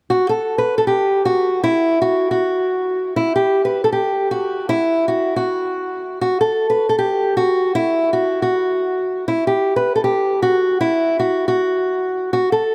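A half-time 4/4 pulse at 157 BPM carries this brooding, menacing hip hop excerpt in F# phrygian, tuned to A4 = 441 Hz, where a dark, boxy, fingerpicked old ladder-braced acoustic guitar plays solo and up front from 0.1 to 12.7 seconds, set in a moderate amount of huge ambient reverb.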